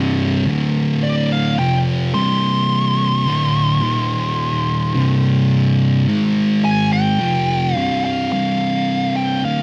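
A thick fuzz guitar opens the recording with a low, brooding riff between C2 and Ab3. It is double-tracked, picked and up front, with a warm, heavily distorted tone. At 1.0 seconds a second fuzz guitar enters with a compressed, dark-toned lead melody that ranges from D5 to C6, shaped by wah and distortion and sitting lower in the mix than the riff. This is slow, ominous metal in C minor at 54 BPM in a straight 4/4, tuned to A4 = 441 Hz. The production is dark and warm, with little reverb, so both guitars sound dry. A new section arrives at 8.3 seconds, and both parts carry on until this short passage, cut from a longer piece, stops at 9.6 seconds.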